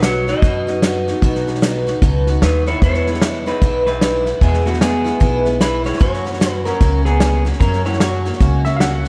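A dreamy, reverb-soaked mix frames this easygoing, sunny honky-tonk and classic country excerpt in E major at 150 BPM with a swung 4/4 feel, where a twangy, slightly broken-up electric guitar carries the melody through tape echo up front, a boxy parlour steel-string acoustic guitar picks the accompaniment with analog chorus, a thumpy gut-string upright bass and a punchy natural drum kit of kick, snare and hi-hat drive it along, and a worn, slightly detuned upright piano with audible action noise slips in a brief echoed second line at 8.6 seconds.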